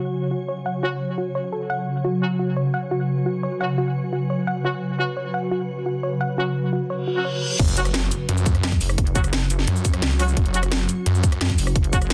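Dense and heavily limited with a light digital ambience, this dark, mechanical excerpt of technical drum and bass opens on a swarming, warbling drone of sustained chords, soft round plucked arpeggios with chorus and classical-style brass ensemble stabs carrying a light vibrato, before a reverse cymbal and impact usher in the drop at 7.6 seconds, where an overdriven tight electronic kick, a drum kit with cracking snare and bright hats, a snarling distorted saw bass and, from 8.6 seconds, a pulsing, mellow pluck wobble bass join the drone and brass.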